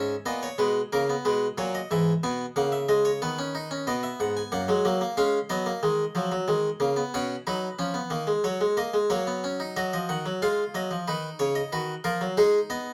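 Driving and solemn, this baroque-style three-part fugue for solo harpsichord moves at 92 BPM in 4/4, its bright, plucked Flemish-style tone on a single set of strings sitting up front in light reverb, as it turns from B major toward E-flat minor at 9.8 seconds in this passage cut from a longer piece.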